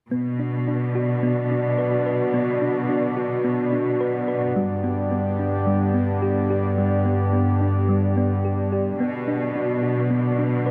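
A straight 4/4 pulse at 108 BPM underpins this tense, brooding cinematic build-up in B minor, cut from a longer piece. A warbling, lo-fi tape-like pad with chorus holds sustained chords, a round, tine-like synth pluck with chorus and digital delay spins arpeggios, and a lush bowed cello section with vibrato carries the bass, while the harmony shifts from Bm to G at 4.6 seconds and back to Bm at 9.0 seconds, all in a moderate scoring-stage reverb.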